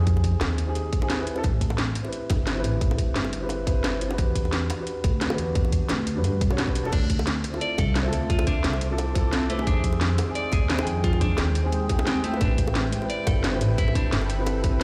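Liquid drum and bass at 175 BPM with a melancholic, soulful mood, built on a woody, thumpy pizzicato upright bass with tube saturation and a tight, up-front electronic kick, a drum kit with a cracking snare and metallic hats, and close, dry high-tuned bongos in the background, while a dark, boxy concert grand piano with long sustain and digital delay plays accompaniment through Fm9, Am9, Em9 and Dm9 chords, a clean picked electric guitar adds dub-echoed arpeggios from 6.9 seconds, and an ethereal, shimmering granular pad with chorus and sidechain pumping enters at 8.1 seconds, all set in a large studio reverb in this excerpt from a longer piece.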